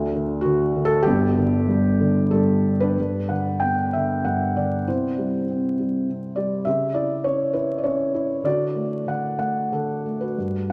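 Classical solo piano, lyrical and sunny in mood, moves in an unhurried 3/4 at roughly 90-104 BPM with a flexible, rubato feel in G major. A single felt-muted upright piano carries the whole piece from 0.0 to 10.7 s, spanning G1 to G5 with a soft, mellow, intimate tone thickened by heavy felt. The harmony opens on a D5 sound before settling on G, then turns to C, passes through C#m7b5 and arrives on D, leaving the phrase open since this is a short cut from a longer work. The character shifts into a new passage at 3.0 s. A lush plate reverb with a three-second tail and a touch of vinyl crackle place the listener further back in the room, giving the recording a hazy, nostalgic glow.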